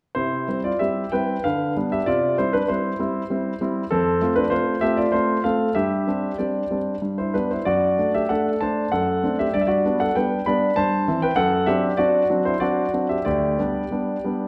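A graceful, elegant classical-period piano sonatina in 3/4 at 96 BPM with a rubato feel, played by a solo concert grand with an intimate, up-front sound, deep bass, long sustain and audible action noise, set in a recital hall's lush reverb, moving from C major to G major at 7.7 s in this excerpt from a longer piece.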